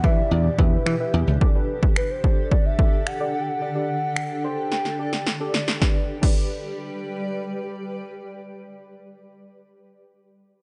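Dry and close with a dulled top end, this upbeat, carefree dance-pop excerpt at 109 BPM in G major sets a hollow, woody clarinet-like synth lead with chorus and digital delay over deep, warbling chord stabs and a blurred granular cloud pad, both sidechain-pumped, while a punchy analog drum machine with kick, snare, finger snaps and crash drives ahead and drops in a fill at 4.7 s, a bright thumbed slap bass and a very quiet downlifter sound only in the opening 1.4 s, and the harmony moves from Em7 through Dsus4 before settling on G at 5.8 s.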